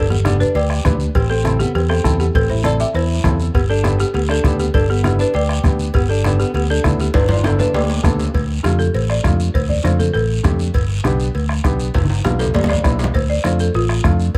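A straight 4/4 cumbia groove at 200 BPM drives this fiery Latin excerpt in D dorian, with a soft-beater bombo, low-tuned congas in the background, ringing cowbell and timbales and a raspy guiro beneath a round, dark fingered electric bass up front, a worn, slightly detuned upright piano accompanying, and a clean, compressed semi-hollow guitar adding a second line until 8.2 s, after which the woody, rustic folk marimba carrying the melody takes a solo from 8.3 s, all recorded close and detailed with little reverb.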